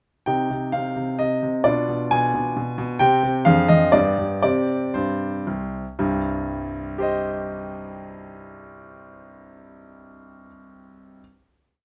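A clear concert grand piano opens at 0.3 seconds with a restless, elegant classical-period sonatina in C minor, moving in 3/4 at a rubato 114-136 BPM. Its single-line melody sits over repeated bass notes with a deep, smooth low end and a vintage, up-front character, passing through C minor, B diminished seventh and G before slowing down from 2.3 to 6.0 seconds. A final C minor chord arrives at 6.0 seconds and rings in light reverb until the piece closes at 11.2 seconds.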